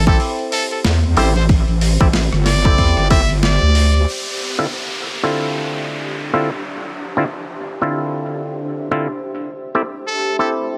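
A brilliant, forceful trumpet with vibrato, scooped notes and tape echo leads this funky, gritty glitch hop excerpt over a heavy, saturated wobble bass, a punchy overdriven electronic kick, a pitched-down boom bap sampler-style kit, stringy auto-wah clav stabs and a blurred granular cloud pad in the background, until the trumpet and bass drop out at 4.1 seconds and an up-front downlifter enters over the clav and pad.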